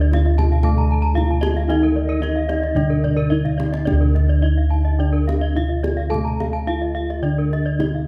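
In a straight 4/4 at around 107-119 BPM, this brilliant, hypnotic fragment of Balinese gamelan in D pelog is anchored by round, beating bossed gongs up front and a tight kendang struck with hard hands, which plays a fill from 3.3 to 3.9 s as the music passes into its second section. A mellow, close-miked bronze metallophone played with padded mallets carries the melody over a dark, smooth lower metallophone accompaniment. Two bright horn-mallet metallophones spin shimmering arpeggios, one entering at 0.3 s, while a distant, reedy bamboo xiao adds an airy second line until 3.8 s, all set in light reverb with a dark, warm production.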